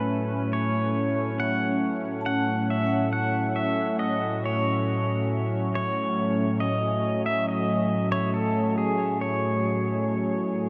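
Unhurried and straight at 69 BPM in 4/4, this ambient passage is a short cut from a longer piece, resting on a single F#m/A chord for its full 10.7 seconds. The mood is serene and weightless. Up front, a warbling, nostalgic, lo-fi tape-like pad holds sustained chords with slow attack and long release, its chorus and built-in reverb lending a hazy sheen. An electric pedal steel guitar, also up front, carries the melody between G#4 and F#5, clean and compressed, played with fingerpicks, slide and volume swells, and trailing into a diffuse ambient delay. Very quiet underneath, a vibraphone with soft mallets rings out metallic, airy arpeggios with fast motor vibrato, while an evolving, nasal analog drone built from sawtooth and pulse waves hums mellowly beneath. A huge, wet reverb with a nine-second tail bathes the whole sound.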